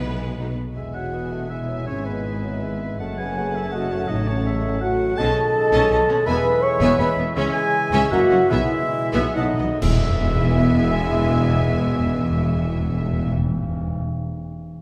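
Restless and dramatic, this fast romantic movement for symphony orchestra moves in a flexible, rubato three-beat pulse, and it is cut from a longer piece. An intense, distant violin section carries the melody while a second violin section, oboe, clarinet and a hollow, airy flute weave supporting lines, with the flute joining at 0.9 seconds. Beneath them, a dark, roomy French horn section and a very quiet trombone section hold sustained chords, violas and a mellow bassoon fill in the accompaniment, and a ringing, thumb-plucked harp spins arpeggios in the background. The bass is anchored by bowed double basses, a rich cello section and a punchy tuba. Soft-mallet timpani enter at 6.3 seconds as the music slows, adding a fill just before a full ensemble accent at 9.8 seconds, where bright cymbals and concert bass drum briefly flare. A wet scoring-stage reverb gives the orchestra a spacious, lush bloom.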